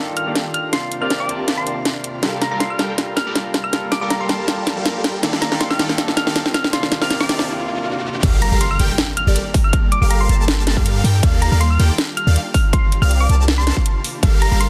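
Future bass in G minor at 160 BPM with a half-time, lightly swung feel, this dreamy, emotional passage cut from a longer piece builds over filter-swept supersaw chords, an ethereal pad, a barky tine electric piano and a round, thumb-piano-like pluck melody, all pumping against a deep, boomy 808-style bass and a trap kit with a sharp snare and metallic hats, while a very quiet riser leads into a brief break. At 8.2 seconds the drop lands with an impact and a punchy, overdriven kick, the electric piano stops, and a soft, airy lead enters in the background with chorused, tape-worn arpeggios. Huge, detuned supersaws with phaser carry the cycle of Ebmaj9#11, C9sus4 and Gm9 chords through a dense, heavily limited master with light reverb.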